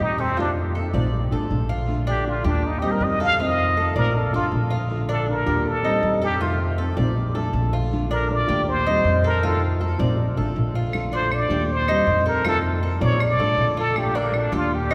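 A plunger-muted trumpet leads this relaxed Cuban son and guajira excerpt from up front, its clear, wah-wah tone colored by a light vibrato in a jazz-style solo. A growly, thumpy pizzicato upright bass sits equally forward, while a thumb-plucked nylon-string guitar with old strings adds dark, full-bodied accompaniment and a mellow Cuban tres picks metallic arpeggios on its doubled strings. Woody claves join in the background at 10.9 s, and a cathedral reverb with a 4.7-second tail fills out the church-like space.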